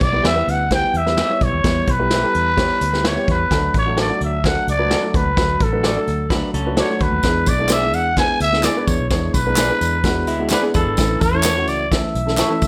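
Uptempo 1960s-style soul in E dorian at 129 BPM, urgent and driving, with a growling, raspy trumpet carrying the melody up front through slapback echo over a dark, woody upright piano with audible action noise, a round, foam-muted fingered electric bass, and a punchy brush drum kit, while a picked guitar through a small old amp adds background stabs, a slightly broken-up fingered guitar plays a brief riff at 6.3 and 10.3 seconds, and close, dry tambourine and group handclaps join at 7.2 seconds as the chords move from Em through D and E7 to A.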